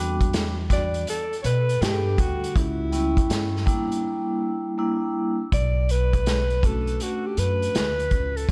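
A light reverb and small room ambience give this short excerpt from a longer piece a close, intimate sound, with the drums, vibraphone and alto saxophone all up front. It is nocturnal, smoky jazz-hop in B minor at 81 BPM, moving in 4/4 with a swung sixteenth-note feel over chords that shift from Em9 to C#m7b5 and Gm6 before landing on Bm9. A woody pizzicato upright bass on steel strings anchors the low end from the start, while a vibraphone played with soft mallets adds a metallic, ringing, airy accompaniment with a slow motor vibrato until about 7.7 seconds. The vintage acoustic kit enters at 0.2 seconds with a punchy kick, a medium-tuned snare and hi-hat, its rolled-off top and pumping room sound giving the groove a dusty weight. From 0.7 seconds a mellow alto saxophone takes the lead in a jazz-style solo, its smooth top, vibrato and scooped notes trailed by a diffuse ambient delay. The solo runs through a break from 4.0 to 5.5 seconds, after which the saxophone carries on into the closing section.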